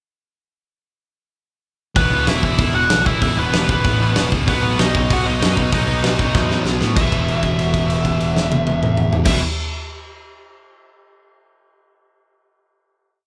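Punk rock at a rowdy, rebellious 193 BPM, this short whole piece opens with a sludgy distorted guitar at 1.9 seconds before a biting overdriven guitar, a growling picked bass and a big rock drum kit with a fat snare and punchy kick kick in at 2.0 seconds with driving eighth-note power chords, a driving eighth-note bass line and a punk fast groove, while a bright, biting lead guitar plays a motif-based melody partly doubled in octaves over E5 and B chords, until a drum fill at 6.3 seconds leads into a final held E5 chord at 7.0 seconds, all heard as a band playing live in one room with light reverb.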